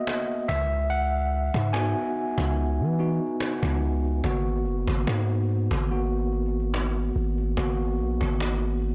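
Contemporary R&B with a sensual, longing mood and a gently swung feel, this short fragment features a clean, up-front tine electric piano as the lead, heard through its built-in speakers, moving from C#7sus4 to G#m9 at 4.2 seconds. A deep, sine-toned 808-style bass enters at 0.5 seconds with a fast attack and long decaying notes, sitting prominently beneath a woody cajon that sounds distant and roomy, struck with hard hands and faint snares. The whole recording carries a small-room ambience and a blown-out, overdriven character.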